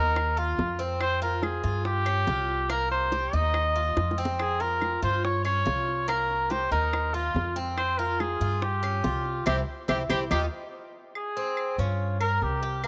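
A straight 4/4 pulse at 142 BPM drives this sultry Cuban son and guajira excerpt in F minor, with woody claves ticking in the background and round, low-tuned bongos played with soft hands sitting close and dry until 10.4 seconds, while a dark, thumpy upright bass in gut-string pizzicato stays up front. A picked Cuban tres spins metallic, octave-doubled arpeggios over a cycle of chords such as Ebsus2, Fm and Dbmaj7#11, and a punchy, vintage trumpet with light vibrato carries the melody in a pop style, all under light studio reverb. A drum fill at 4.0 seconds and a band accent at 9.5 seconds mark the way before the trumpet takes a solo from 11.2 seconds as the harmony moves to a Gdim.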